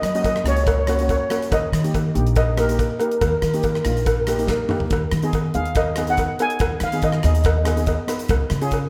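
A sunny, carefree calypso passage cut from a longer piece opens with a mellow lead steel pan carrying the melody, played with soft rubber sticks, alongside a woody, thumpy pizzicato upright bass that sits up front and a gated 80s drum kit with a punchy kick. A second steel pan, a double seconds played with medium rubber sticks, joins at 0.1 s with shimmering accompaniment in a lower register, and a metallic cowbell enters at 0.3 s. The tempo is a lively 141 BPM in 4/4 with a light swing on the sixteenths, and the tuning sits at A4 = 442 Hz. The drums bring a polished, gated big-room sound with a medium-tuned snare, hi-hat, rim click and toms, and a short fill at 4.5 s. The harmony moves through F#, D#, G#m/D# and C#, with the dark, steel-strung bass anchoring it in a rough home demo mix with light reverb and a small room ambience.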